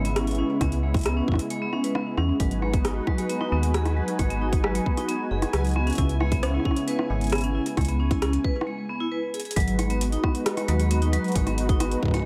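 This glitchy, intricate IDM fragment moves at 134 BPM in a straight 4/4, centred on G# minor and cut from a longer piece, with a booming analog drum machine ticking out metallic hi-hats and rim clicks through tape echo while a tight, up-front electronic kick joins at 0.6 seconds. Underneath, a metallic FM bass with a fast attack and decaying, mellow tone sits forward in the mix, as a smooth, detuned sawtooth pad holds sustained chords with a soft attack, long release, chorus, 12-bit sampler grit and sidechain pumping. A vibraphone struck with hard mallets rings out arpeggios with a fast motor vibrato and a boxy small-room character, colored by tape echo. From 2.4 to 8.7 seconds a bubbling, resonant texture of random filter steps hovers in the background on a high G#, wrapped in chorus and its own reverb. The harmony moves between C#m7 and G#m7, and after a brief break a drum fill at 9.3 seconds leads into a new section at 9.6 seconds, all sitting in light reverb.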